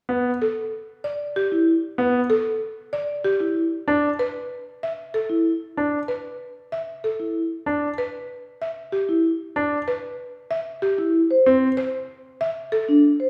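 Classical minimalist pattern music at 190 BPM in a straight 6/4, bright and hypnotic, in which a brilliant, intimate grand piano with audible action noise lays down an accompaniment from 0.1 seconds, a woody, buzzing marimba struck with medium hard mallets carries the dry, airy melody above it, and a metallic, ringing vibraphone played with soft mallets joins at 1.5 seconds with mellow, vintage-toned arpeggios shaded by slow motor vibrato, all three up front within a moderate recital hall reverb in this short excerpt.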